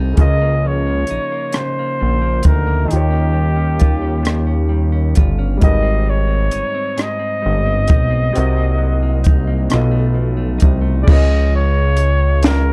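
A slow six-eight R&B piece at 44 BPM, this excerpt carries a late-night, yearning mood in a dark production with little reverb. A clear flugelhorn sings the melody from 0.2 seconds, its vibrato and punchy, vintage tone giving it the feel of a pop-style solo. Underneath, a fat analog bass sits up front with a thick, detuned sawtooth sound, a filter sweep and sustained notes, while a compact cocktail drum kit, also up front, brings a high-tuned snare, punchy kick, rim click, hi-hat and crash with a smooth, rolled-off top. A baby grand piano adds natural accompaniment in the background, and a clean, picked, compressed electric guitar plays a second line until 11.7 seconds. The harmony moves through Db69, Eb9, Abmaj7, Cm7b5 and B7#11 before settling on Db as a new section begins at 11.1 seconds.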